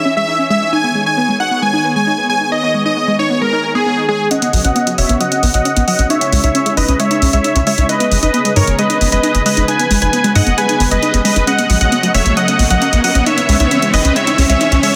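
A dense, heavily limited modern master with a moderate digital room gives this soaring, bittersweet slice of uplifting trance its polish, cut from a longer piece. A huge, airy supersaw sits up front carrying the melody, its detuned sawtooth stack thickened by a sub octave and noise layer, touched with vibrato and passed through a digital delay and a low-pass filter that sweeps open across the build-up. Alongside it, a punchy, very quiet unison lead plays a second line, while a lush, warbling pad with chorus holds sustained chords moving from C#m and G#m toward Badd9 and C#madd9. A full-bodied, wave-folded pluck spins arpeggios through delay from the start, its filter sweeping in the opening seconds before the overdriven electronic hi-hat arrives at 4.3 seconds to launch the build, with a tight, driving sawtooth sequencer bass following just after. From 8.1 seconds an electronic riser climbs in the background, pushing the tension toward the end of the passage.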